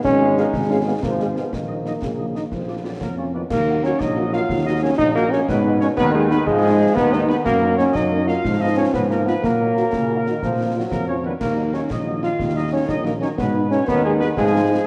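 Stern and martial, this military-style march for wind band moves in a straight 6/8 at 122 BPM, counted in dotted quarters, in Eb minor and tuned slightly below standard pitch, cut from a longer piece. The euphonium sits up front carrying the second line, its close-miked, punchy tone with light vibrato standing out as the most prominent voice. A tight trumpet section takes the melody quietly, with a vintage cast, while a very quiet French horn section fills in the accompaniment and a distant, roomy trombone section holds sustained chords in the background. The close-miked tuba anchors the bass, and a close, dry kit of concert snare drum, concert bass drum and clash cymbals, its cymbals bright, plays at a low level. The harmony leans on diminished and half-diminished colors before cadencing through Bb to Ebm, and the whole recording is bathed in a scoring-stage reverb and a worn, warbling cassette-tape quality with drifting pitch.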